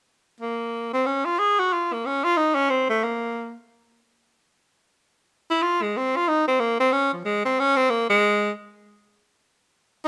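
At a brisk 184 BPM in 4/4 with a swung eighth-note feel, this moody, smoky jazz excerpt in Bb minor features a solo tenor saxophone, bright and up front with vibrato and a soft attack, entering at 0.4 seconds and playing through to 10.1 seconds in a light reverb, its phrasing moving into a new section at 5.0 seconds.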